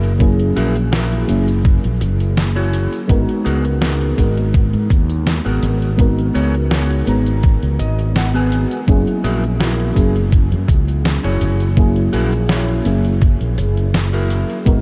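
Vaporwave at 83 BPM in 4/4, this woozy, nostalgic excerpt, cut from a longer piece, drifts over F#9 and G#m9 chords, with a soft, dark FM electric piano and a clean, fingered electric guitar riff, both carrying analog chorus and delay, over a round fretless electric bass up front. A thumpy, tape-warm electronic kick enters at 0.2 s alongside a detuned 8-bit drum machine of hi-hat, medium-tuned snare and tambourine, while the guitar adds a fill from 7.4 to 8.9 s. The dreamy mix is soaked in a huge ambient reverb with cassette-tape colour.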